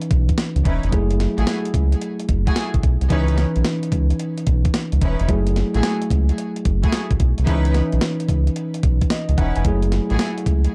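A clean tine electric piano and a crisp, sampler-style 8-bit drum machine open this bouncy, confident new jack swing excerpt at 110 BPM in 4/4, with swung 16ths. The drums sit up front, pairing a thumpy kick and medium-tuned snare with hi-hat, their tape-warmed sound re-recorded in a small room. A round, deep analog bass enters at 0.1 s, blending sawtooth, sine and triangle colours into a fast-attack, sustained tone that stands as the loudest part near the front of the mix. From 0.6 s, a distant, lush studio string section adds bowed ensemble stabs with vibrato and delay, sitting quietly beneath the others. The harmony moves between C#m9 and F#m9, and the dry, dark production keeps the groove close and intimate.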